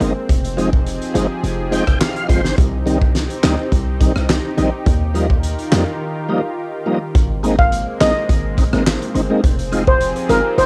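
A gritty, overdriven tonewheel organ with chorus vibrato, key click and a slow rotary speaker accompanies this summery, bouncy dancehall cut at 105 BPM, playing a fill at 1.4 seconds over a loose, acoustic drum kit with a fat snare, punchy kick, handclaps, hi-hat and rim click, the kit colored by cassette tape. A heavy, hard-hitting 808-style bass and a lush, warbling unison pad with chorus and sidechain pumping fill out the Fm7, Cm and Ebadd9 changes, which pause for a break at 6.0 seconds. At 7.6 seconds a shimmering, mellow steel pan melody, also on cassette tape, enters over Abadd9 and Fm7, all within a small-room home recording.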